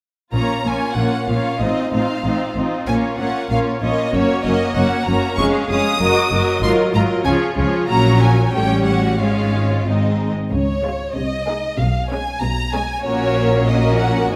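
Quick classical-period movement for string orchestra at 95 BPM in 2/4, urgent and stormy, cut from a longer piece, where an expressive, close violin section carries the melody over a focused, distant second violin line, an even, up-front viola accompaniment, a lush cello section set in the background and a smooth-topped double bass section, moving from Bb minor into Db major at 5.4 seconds and reaching a new section at 10.5 seconds, all within a moderate scoring-stage reverb.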